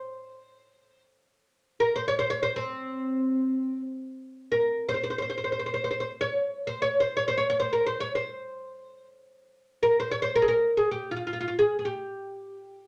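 Set in a reverberant studio space, this short cut from a longer Arabic maqam ensemble piece features a solo oud, up front and alone from start to finish across its 12.9 seconds. The fretless instrument's plectrum-plucked double strings sound bright and woody, spinning out a hypnotic, longing line in hijaz that returns to its opening material at 4.2 seconds.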